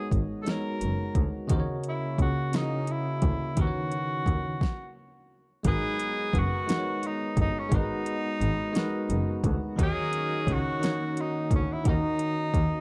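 Dark, warm small-room ambience frames this sultry, late-night slow six-eight R&B excerpt in G# minor at 58 BPM. A breathy, whispered tenor saxophone with slapback echo carries the melody over bell-like tine electric piano, a shimmering chorused pulse-width pad, a clear bowed double bass and an overdriven, up-front drum kit with soft kick, fat snare and metallic hats, moving between G#m9 and D#m7 through a stop at 4.6 seconds before a mellow, tight horn section adds stabs in the background from 5.6 seconds.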